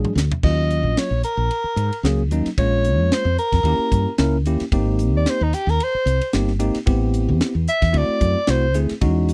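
A swung 16th-note groove at 112 BPM in 4/4 drives this slick, funky electric jazz fusion excerpt, opening with a short drum fill from the tight funk kit, whose high-tuned snare and tight kick sit up front in a dry, close 1970s-style studio sound. A smooth soprano saxophone with slapback echo takes the solo from 0.4 seconds over chords moving from Ebm9 through Abmaj9 to D9, supported by a bell-like, bright tine electric piano and a woody, round fretless bass thickened with analog chorus. Barely audible congas with soft, damped hands slip in near the end at 9.0 seconds.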